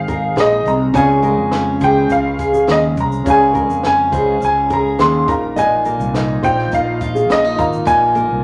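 A worn, woody upright piano carries the slightly detuned, long-sustaining melody up front in this sunny, heartfelt acoustic pop excerpt, over a full-bodied picked jumbo steel-string acoustic guitar, thumb-plucked classical nylon-string arpeggios, a punchy fretless electric bass, a reedy electric piano with fast tremolo sitting in the background, and a dry compact cocktail kit of kick, shaker and high-tuned snare, all in a straight 4/4 feel within a large studio reverb.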